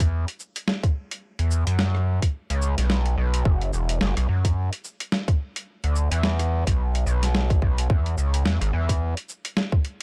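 A dry, gritty hardware sound frames this playful, funky glitch hop clip with a swung sixteenth feel, where an aggressive, wave-folded synth bass with a resonant filter pluck and saturated sawtooth edge sits up front beside an overdriven, compressed boom bap sampler-style kit of hi-hat, rim click, shaker and medium-tuned snare, while a tight, layered electronic kick drops out from 2.3 to 3.5 seconds.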